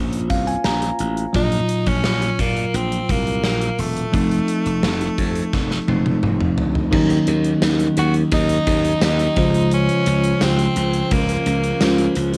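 A bell-like tine electric piano fill with a cassette-tape tint opens this urgent, nostalgic 1980s-style pop excerpt at 86 BPM over a Bbmadd9 chord, with growly slap bass and a punchy gated drum kit with bright cymbals; a raspy, forceful tenor saxophone with vibrato and tape echo takes the melody at 1.4 s over Gbmaj7/Bb and F7 changes, a very quiet overdriven guitar joins at 6.9 s after a drum fill as the harmony moves to Ebm7 and Dbmaj7, and a mellow soft-mallet marimba slips in at 11.8 s in the background of this lightly reverberant home cassette recording.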